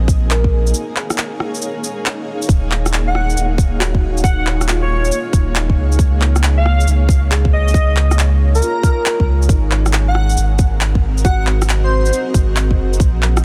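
A blurred, cloudy pad and a round, deep sub bass open this wistful, melancholic future garage fragment, both pumping to the sidechain from the very first moment, with the pad's bright, detuned granular texture drifting through its own reverb. A tight, tape-colored kick sits up front alongside the sub bass, while swung electronic shaker, handclaps and rim click fill in the 4/4 groove, with a break falling between 0.7 and 2.5 seconds. Tucked in the background, a felt-muted upright piano adds soft, dark, intimate accompaniment, its action noise audible and its notes trailing into tape echo. At 3.1 seconds an airy, dreamy lead enters with the melody, its detuned unison tone shimmering with chorus, vibrato, a moving notch and a hiss of noise, and colored by cassette tape and analog delay. The chords move from Bbm7 through Ebm7 and Db to Ab7, all within a dense, heavily limited modern master set in digital ambience.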